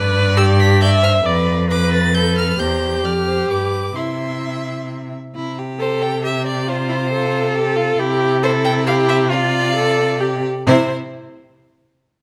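A spirited, lively classical-period string quartet movement in C major, taken quickly at 134 BPM in a rubato 3/4, where an expressive, soft-attacked first violin with vibrato and portamento carries the melody from 0.4 seconds over a smooth second violin line, an up-front, even viola accompaniment and a focused, clear cello bass, the quartet captured by close, detailed microphones in a moderate recital hall reverb.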